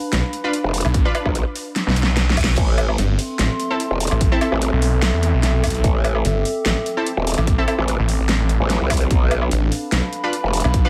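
A digital ambience frames this heavy, aggressive wobble dubstep excerpt in A minor, moving at 147 BPM in a half-time feel with a light swing, its chords shifting from B diminished to A minor and back. A snarling sawtooth bass with a moving notch and a wobbling growl bass, both distorted, bright and up front, drive the low end beneath a punchy electronic kick and a dubstep kit with a huge snare, metallic hats and woodblock. Bold ring-modulated orchestra-hit stabs ring out with dub echo over a dark, warbling lo-fi pad that pumps under the sidechain, while a drum fill at 1.8 seconds and a very quiet reverse cymbal and zap mark the turn to A minor at 2.6 seconds.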